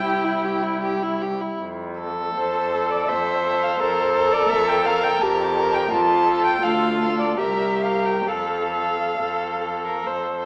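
Heard through worn, warbling old cassette tape with small-speaker sound and a wet, spacious stage reverb, this tender, lyrical excerpt from a slow romantic string quartet movement unfolds in a rubato three-beat sway. A rich, distant first violin sings the high melody with vibrato, while a clear second violin sits up front on a smooth inner line and a focused viola supplies bowed accompaniment. Beneath them, a far-off cello holds an even, low bass as the harmony passes through a gentle Bbmaj7sus2/F and a Dm before settling home on F.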